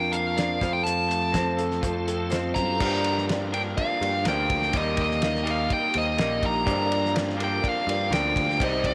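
A dark, overdriven lead guitar with tape echo carries the melody up front from the very start of this reflective, wistful folk rock and heartland rock excerpt at 124 BPM in G minor, joined at once by a woody, shimmering twelve-string acoustic guitar, a twangy, lo-fi electric guitar riff with warbly pitch drift, a bright picked electric bass, a very quiet piping tonewheel organ on slow rotary holding sustained chords, and a mellow upright piano that plays a fill at 1.8 seconds, while a cloth-damped, thuddy drum kit with a fat snare enters at 0.1 seconds and the harmony moves through Gm7 and Eb under light studio reverb.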